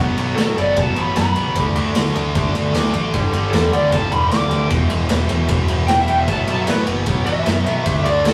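A lead guitar through a small cranked amp carries the melody in a short hard rock excerpt, its overdriven, picked tone ranging between A4 and D6 from 0.4 s as a solo over a heavy, menacing groove at 152 BPM in a straight 4/4. Beneath it, a tight distorted guitar and an overdriven electric guitar, both bright and picked, play the riff from the very start, the latter sitting in the background, while a fuzz picked electric bass with overdrive pushes up front from E1 to A2. A big rock drum kit comes in at 0.2 s with a punchy kick, a medium-tuned snare and ride cymbal, recorded with a pumping studio-room sound and placed up front. The harmony moves through B5, D5, G5, E5 and back to B5. The whole take has the rough character of a rehearsal-room recording, with saturation and a small, booth-like ambience.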